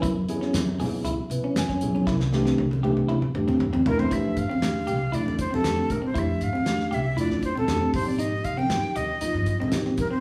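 A breathy, bright jazz flute with vibrato and a crisp, chiffy attack takes the melody up front from 3.9 seconds in this slick, funky electric jazz fusion excerpt at 118 BPM, set over mellow tine electric piano chords, twangy picked stabs from a clean electric guitar, woody pizzicato upright bass, a dry, dark 70s drum kit with a fat snare and tight kick that plays a fill from 2.1 seconds, and distant, hard-handed congas in the background, all in a moderate stone room.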